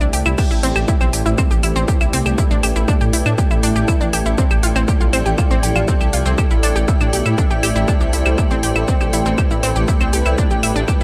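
Melodic techno at 120 BPM, dramatic and cinematic, cut from a longer piece, where a rumbling detuned saw bass, bright warbling unison pluck arpeggios with dub echo, a moody dark analog pad with chorus in the background, and a blurred granular cloud pad all pump against a heavy, up-front electronic kick that enters at 0.4 seconds, while a tape-warm techno kit of claves, crash, smooth hi-hats and shaker rides over chords moving from Cadd9/A through G6/A and Fadd9/A in light digital ambience.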